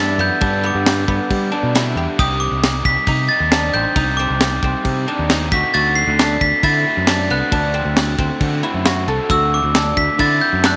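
A small room's light reverb frames this wistful, intricate math rock and midwest emo excerpt at 135 BPM in straight 4/4, moving through G6, Cm and D7. A sparkling, bell-like glockenspiel struck with brass mallets carries the melody with a slapback echo, over silvery, ringing guzheng arpeggios played with fingerpicks and a crunchy, double-tracked overdriven guitar riff sitting in the background. A growling fingered electric bass, overdriven and up front, plays from the start, and a crisp, polished fusion kit enters at 0.4 s with a punchy kick, high-tuned snare and bright crash cymbal.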